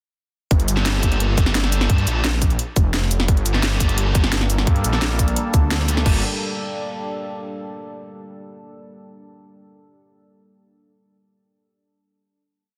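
A thick, detuned sawtooth bass sits up front in this dark, tense technical drum and bass piece, its chopped, saturated phrases colored by chorus and overdrive as the drop opens on a Gmadd9 chord at 173 BPM in G minor. Alongside it, a tight, overdriven electronic kick plays a broken-beat part, while the kit adds a cracking snare, bright closed hats, shaker and crash, re-recorded in a small room and pushed forward with its own overdrive. From 0.8 s a high-gain, picked, double-tracked electric guitar throws in sparse chord stabs, one distorted shape moved in parallel and trailed by dub echo. At 4.4 s a deep, moody pad enters with slow attack, built-in reverb and sidechain pumping, its chords mellow and sustained. The drop ends at 6.1 s and gives way to a final chord, all held together by light reverb and a dense, heavily limited modern master.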